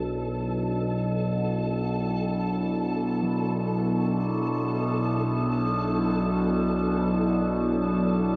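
From the first moment, an up-front, overtone-sweeping sawtooth drone low in the range, treated with chorus, phaser and its own reverb, sits beneath a bright, detuned resonant pad holding sustained chords with a filter swell and a faint, flickering granular shimmer, all in free time and B minor on a Bm chord, before a very quiet bronze singing bowl enters at 3.2 seconds with metallic, slowly beating arpeggios, the whole desolate, ominous dark ambient fragment, cut from a longer piece, soaked in a huge 7.4-second reverb with a dark, warm finish.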